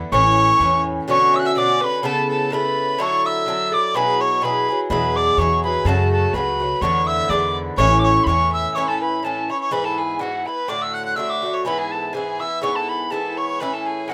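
A reedy tin whistle carries the melody up front, its crisp, chiffy attack and vibrato giving this bright, cheerful Celtic polka a lively lead, though it sits with a slightly distant sheen. Picked Irish bouzouki with metallic double strings supplies the mellow, up-front accompaniment throughout, while a rich, smooth fiddle plays a close, even second line beneath the whistle with light vibrato. A woody pizzicato upright bass appears only briefly at the start, from 0.1 to 1.0 seconds, then returns from 4.9 to 8.6 seconds. The tune moves at 125 BPM in 2/4 with a gentle swing, in A major, passing through colourful add9 chords before settling into a plainer E, D and A progression in the second section from 8.7 seconds. Light reverb surrounds this rough home demo mix, which is cut from a longer piece.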